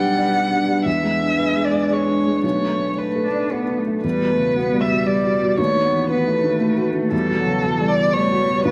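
Neoclassical piano and strings at 116 BPM in a rubato 3/4, longing and melancholic, where a warm, expressive solo violin carries the melody with vibrato and portamento over a dark, woody cello second line, while a felt-muted upright piano with a mellow, intimate tone and audible action noise plays the accompaniment and a very quiet, deep, detuned analog pad with chorus and a slow attack holds sustained chords, the ensemble set in a moderate concert hall reverb as this short cut moves from Gmaj7/B and E7 toward Emadd9.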